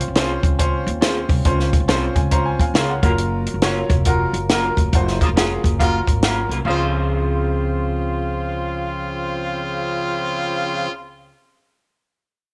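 Swinging eighth notes drive this joyful, danceable slice of uptempo 1960s-style soul at 138 BPM in Db major, cut from a longer piece. A compact cocktail drum kit sits up front with a dry, high-tuned snare, punchy kick and hi-hat until 6.6 seconds, while a woody pizzicato upright bass holds down the low end. A brilliant upright piano plays accompaniment and drops in a fill around 1.9 seconds, as a twangy, slightly broken-up electric guitar through a small old amp adds picked stabs with lush chorus in the background. Underneath, a clean tonewheel organ with a stopped rotary speaker sustains chords, and the harmony moves from Dbmaj7 to Gbmaj7 and back. During a band accent, a clear jazz-style horn section with light vibrato and a smooth top enters up front at 5.2 seconds to carry a second line, all set in light studio reverb.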